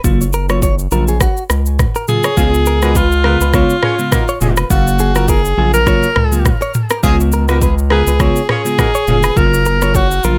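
A lightly swung 4/4 groove at 103 BPM opens this breezy, romantic afrobeats passage, cut from a longer piece. An electronic, produced afro-pop drum kit sits up front, with a deep kick, rim clicks, shaker and toms, beside a round analog bass that blends square and sine tones with a wave-folded, evolving edge. A bell-like FM electric piano sparkles and warbles through chorus as it outlines the alternating F#maj7 and C#7 chords in F# major. Just after the start, a clean, direct-recorded electric guitar adds a bright, compressed, picked riff touched with tape echo. At 2.1 seconds a present alto saxophone takes the pop-style solo melody with light vibrato, and from 2.4 to 9.2 seconds a dark, distant horn section in octaves plays a punchy second line, both carrying tape echo under a light reverb.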